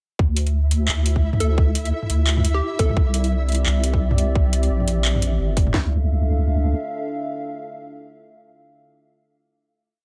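A dry, close sound frames this tense, cinematic half-time drum and bass piece, where a tight kick and cracking snare sit up front beside sparser claps, metallic hats and low toms, all carrying a swung feel. A deep wobble bass with chorus rolls through modulated phrases under a grainy, flickering high texture, while a hollow, bouncy square pluck with tape colour and dub echo appears briefly from 1.4 to 3.0 seconds. A moody, detuned analog pad with sidechain pumping enters at 3.2 seconds and carries the final minor chord through to the end.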